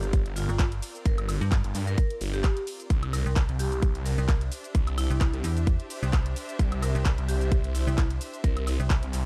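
A swung 130 BPM bass house groove in 4/4 drives this short, bouncy and gritty excerpt, built on a tight, up-front electronic kick and an overdriven house kit of handclaps, hi-hat, ride cymbal, shaker and woodblock that sounds re-recorded in a large room. A thick, swirling phased saw bass and a metallic FM bass that enters at 0.5 s share the low end, both saturated and pumping against the kick over a move from G minor to C at 2.9 s. Above them, a ringing hard-mallet vibraphone with slow motor vibrato and digital delay carries the melody, while a close, lush studio string section pumps quietly alongside in a dark, dry production.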